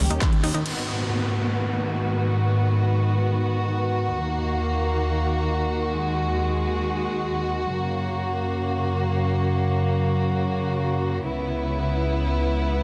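A dark chamber string section sits up front, bowed close and intimate with a soft attack, light vibrato and a hushed sul tasto tone, holding sustained chords with a sidechain pump through this bittersweet, driving uplifting trance fragment cut from a longer piece. The opening fraction of a second carries the full band in a brief accent at 0.2 seconds. A punchy, funky analog bass plucks a single sawtooth-and-square note, and a lush, detuned unison pluck arpeggiates in the background through digital delay with a ring-modulated noise layer. A layered big-room dance drum kit adds an overdriven crash, handclaps and metallic hi-hats. From 0.7 seconds, as the harmony settles on G#m7, an electronic downlifter sweeps in until 4.2 seconds. After that the strings carry on alone over a chord progression moving through D#m, F# and C#m7. Light reverb and digital ambience surround a dense, heavily limited modern master.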